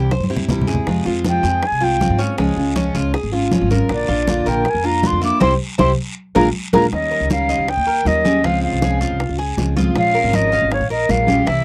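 Sultry Cuban son and guajira at 158 BPM in 4/4, cut from a longer piece: a reedy, airy silver concert flute enters up front at 1.3 s for a straight-toned solo over a woody pizzicato upright bass, a full-bodied picked steel-string acoustic guitar with audible finger squeak, and mellow, metallic arpeggios on the double-strung Cuban tres, while round low-tuned bongos and bright hard-hand congas sit in the background beside a raspy guiro, drum fills open the passage, and a band accent from 5.4 s leads into the second section at 6.9 s, captured in a dry, close 1970s-style studio sound with light reverb.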